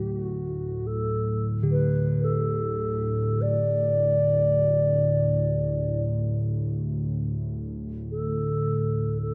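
Peaceful and spacious, this free-time world meditation excerpt sets a pure, hollow alto flute melody up front over a deep, detuned ambient pad drone treated with chorus, while a bronze singing bowl rings with slow metallic beating in the background, all bathed in a dark, wet stage reverb.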